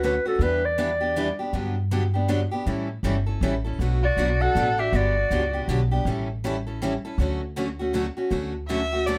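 Acoustic string swing in the jazz manouche style, lively and playful at 159 BPM in a swung 3/4 and D major, cut from a longer piece. Two bright, picked steel-string acoustic guitars with fresh strings play throughout: one is a boxy parlour with finger squeak, the other a full-bodied jumbo. Beneath them sits a woody, thumpy pizzicato upright bass on gut strings, while an up-front mellow clarinet with vibrato and scooped notes carries the melody through plate reverb. A warm, bowed violin with portamento joins at 4.0 seconds and returns at 8.7 seconds, as the chords move from Em7 through Gmaj7 and A7 to Dmaj7 in a lightly reverberant space.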